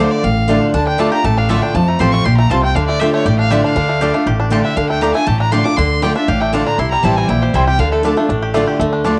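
Haunting and lonesome, this fast bluegrass excerpt in D minor runs at 238 BPM in a straight 4/4, with a clear, focused fiddle carrying a boxy, lightly vibratoed solo over chords moving between Dm, F and C. A bright, full-bodied picked acoustic guitar sits up front beside a woody, thumpy pizzicato upright bass, while a round, double-strung mandolin adds background stabs and a twangy, percussive fingerpicked banjo joins the melody at 0.7 seconds. The fiddle, guitar, mandolin and banjo carry a cassette-tape character, and the home recording sits in a moderate spring reverb.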